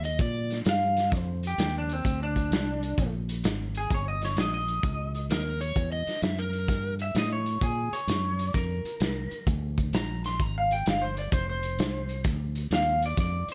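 Electric blues shuffle with a laid-back, soulful swing, where a muffled, gritty vintage drum kit with a punchy kick and a round fingered electric bass carry the groove under a twangy, slightly broken-up electric guitar melody from a small old amp entering at 0.7 seconds, while an overdriven slide guitar adds brief second-line touches at the start and again from 5.3 seconds, all set in light reverb over a dominant-seventh progression with a diminished passing chord in this cut from a longer piece.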